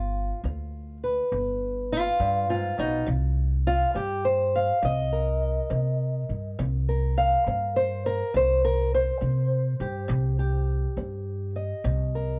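Smoky and soulful, this slow minor-key blues excerpt moves at 68 BPM in a straight 12/8, with a fingerpicked old ladder-braced acoustic guitar carrying the melody in a dark, boxy voice of worn strings, touched with plate reverb. Beneath it, a thumpy pizzicato upright bass holds down the low end, both parts sitting up front in a small, damp booth heard from a little further back, with a muted top. After an opening on G7, the guitar takes a solo from 3.1 seconds over Cm7 until the cut at 12.4 seconds.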